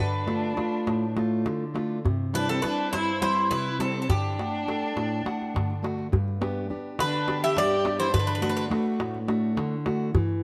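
Greek folk music from a bouzouki band, cut from a longer piece, in 7/8 metre with a straight feel and a hopeful, warm mood that gradually speeds up throughout. A bright, metallic bouzouki carries the melody up front with picked double strings and some octave doubling until about 8.6 seconds. Beneath it, a single bowed violin plays a dark, woody second line with vibrato, sounding distant. A full-bodied jumbo steel-string acoustic guitar, fingerpicked and plugged in, supplies the accompaniment up front across a broad range and continues to the end. A large, deep clay-shell darbuka with a natural skin enters at 0.3 seconds, close and dry, while the ensemble sits further back in a room with a moderate plate reverb. The harmony moves from D minor through C to D before a second section opens at 6.1 seconds on G and returns to D.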